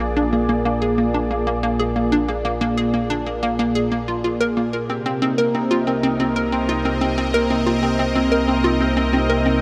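A huge ambient reverb with a long 8.7-second tail washes over this mysterious, expansive excerpt of sequencer-driven space music in C minor at 92 BPM. An evolving, resonant sawtooth pad with ring modulation and chorus holds sustained chords up front, while a hollow, bouncy square-wave pluck with a noise layer and tape echo repeats its riff over a round, deep, wave-folded analog bass. The harmony moves from Bb7 to Cm7 at 4.9 seconds, where a bright, ringing fingerpicked Celtic harp enters with echoing arpeggios.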